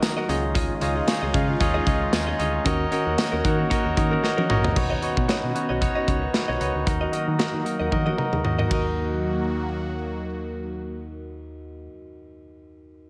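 1980s-style pop in Eb minor at 114 BPM with a light 16th-note swing, this dramatic, urgent excerpt opens on a bright, barky tine electric piano fill, then runs through chords from Dbadd9 and Ebm7 to Badd9 and Ebm. A punchy, up-front studio drum kit with gated reverb drives the groove and drops out at 8.8 seconds, partway through a fill, while a round, dark FM bass enters at 0.3 seconds. A picked, clean guitar riff sits in the background under lush chorus and delay, and a swirling, detuned sawtooth pad with phaser holds sustained chords until 11.9 seconds.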